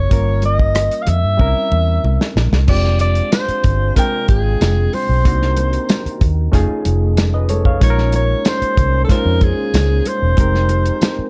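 A mellow alto saxophone carries the melody in this lush 1970s-style soul excerpt, its subtone and light vibrato softened by slapback echo and plate reverb. At 94 BPM in a straight 4/4, the mood is silky and cinematic, moving through rich chords such as Gm7b5, C7b9, Fm69 and Bbm11. A reedy, slightly out-of-tune electric piano heard through its built-in speakers supplies accompaniment with spring and plate reverb, while a round, foam-muted fingered bass sits up front beside a dry, dark drum kit with a tight kick, rim clicks, dark cymbals and a rolled-off top that plays a fill from 1.4 to 2.7 seconds. Very quiet, damped congas with a bright, thin skin add texture from the start. At 2.7 seconds a distant, roomy French horn section enters with soft-attack sustained chords, and a jingly tambourine joins in the background at 3.3 seconds, all under a light reverb.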